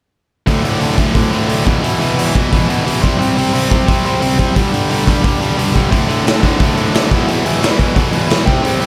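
Upbeat and rowdy, this punk rock excerpt charges along at 176 BPM in a straight 4/4, with two picked, distorted electric guitars, one overdriven and one tight, playing bright, up-front riffs over power chords moving through D5, E5, C5 and G5. A raw garage drum kit of hi-hat, punchy kick and medium-tuned snare sounds gritty and saturated, with a rolled-off top and a pumping stone room around it. All three parts play together from 0.5 to 8.9 seconds under a light reverb.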